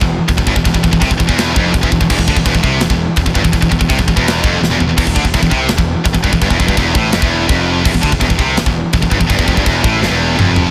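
A dense, heavily limited modern master in a small room frames this dark, relentless heavy metal excerpt at 166 BPM in E phrygian, where two bright, high-gain distorted guitars grind out a low riff on E minor over a growly, fuzz-driven picked electric bass, while an up-front acoustic drum kit with a tight kick, medium-tuned snare, toms, crash and china cymbals drives straight ahead and fires off fills at 4.6 and 10.0 seconds.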